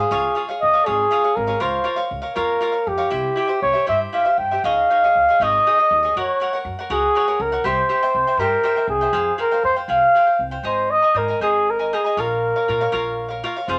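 A small room lends a moderate reverb to this brief, romantic and festive mariachi passage, cut from a longer piece and moving in a loose, rubato 6/8. Up front, a dark trumpet sings the solo melody in a classical style, with light vibrato and a smooth top. Beneath it, a crisp, picked cavaquinho and a woody pizzicato upright bass on steel strings carry the accompaniment throughout, as the harmony shifts into a new section at 10.6 seconds.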